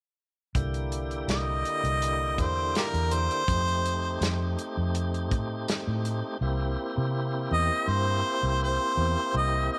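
A clear, jazz-style harmonica carries the melody from 1.3 seconds with light vibrato, tongue slaps and scooped notes in this rollicking, gritty straight-eighth soul blues excerpt at 82 BPM in C mixolydian, backed by a dark, round, foam-muted fingered electric bass, a lightly overdriven tonewheel organ turning on a slow rotary speaker, and a roomy soul drum kit with a tight kick and rolled-off top that drops out at 6.2 seconds, all in light studio reverb as the C7 and F7 changes give way to a C7#9 at 6.4 seconds.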